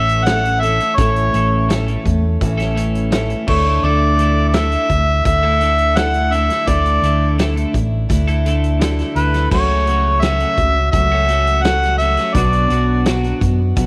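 A straight 84 BPM 4/4 groove from a loose, punchy indie drum kit and a round, dark fingered electric bass carries this hopeful, open-road folk and heartland rock excerpt, where a mellow, vintage harmonica sings the up-front melody with scooped notes over a fresh-stringed picked steel-string acoustic guitar, a twangy twelve-string electric riff treated with vibrato, and a very quiet, woody, slightly detuned upright piano, all moving through A, Dsus2, F#m/C# and Bm in a small room.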